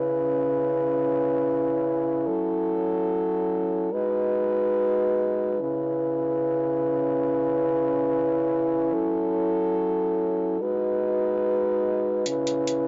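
Ethereal and hazy, this short excerpt from a longer atmospheric cloud-rap piece floats in free time in C# minor, tuned slightly sharp. A dark brass ensemble, classical in style and placed up front, holds sustained chords from the start through 12.9 seconds, moving through C#m7, F#m7 and G#m7 before returning to C#m7. Its voicings span C#3 to B4, giving the section a heavy, solemn weight. At 12.3 seconds an electronic hi-hat slips in briefly, its produced hats overdriven and re-recorded in a small room, sitting well beneath the brass. The recording itself sounds blown-out and overdriven, with light reverb and a muffled top end that deepens the fog.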